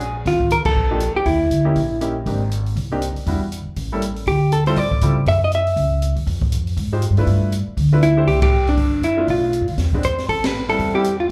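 Relaxed small-group swing and bop at a brisk 240 BPM, cut from a longer live club set with light reverb, where a dark, clean hollow-body electric guitar carries the fingered melody up front (pausing between 2.1 and 4.3 seconds), a woody, thumpy gut-string upright bass plucks beneath, an open drum kit with dark cymbals, a high-tuned snare and boomy kick sits lower in the mix, and a clear, short-sustained baby grand piano with slapback echo accompanies through shifting extended chords from Ebsus2 to Am9, the band hitting accents at 0.6, 8.4 and 10.4 seconds.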